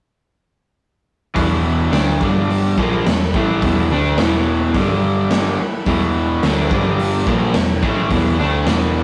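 A very quiet, buzzy vintage combo organ with light vibrato holds sustained chords from 1.3 s. At 1.4 s this swaggering garage rock fragment kicks in with an overdriven, double-tracked guitar riff up front, a round, dark hollow-body picked bass, and a gritty acoustic drum kit with a punchy kick, a medium-tuned snare and a rolled-off top in a bright stone room. The rough rehearsal-room sound carries warm saturation and moderate reverb, and the drums drop out at 8.8 s, just before the end.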